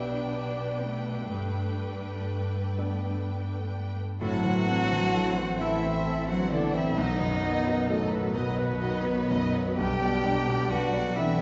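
A roomy, distant orchestral sound bathed in a wet scoring-stage reverb opens this moving, hopeful film-score excerpt in G major, drifting at a slow 43 BPM in a rubato 6/8. A close, expressive solo cello carries the melody with vibrato and portamento over a clear, deep-toned grand piano, a lush violin line, a very quiet dark viola section and a woody cello section on the bass. At 4.2 seconds the texture blooms as a distant violin section takes up the melody alongside an airy flute, a mellow clarinet, soft sustained French horn chords and a bowed double bass section, moving from Am to B before settling back on G/B.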